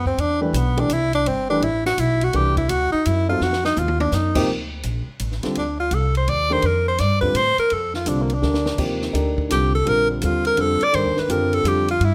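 Spiritual and searching, this modal jazz waltz moves at 167 BPM in 3/4 with a swung eighth-note feel, opening in C lydian over Cmaj9 before shifting to Bb major at 4.5 seconds, where the harmony settles on Bbmaj9 and later Ebmaj9. A tenor saxophone carries the melody as an up-front solo throughout, its warm tone shaded with vibrato and scooped notes in a classic jazz style. Beneath it, a woody upright bass with steel strings plays pizzicato, also sitting close and present. A dark, mellow concert grand piano supplies accompaniment with a deep low register, while a compact cocktail drum kit with dark cymbals, a high-tuned snare and a tight kick sounds natural and boxed-in, adding brief fills at 3.4 and 8.4 seconds. The ensemble sits in a moderate large-studio reverb, and the passage is cut from a longer piece.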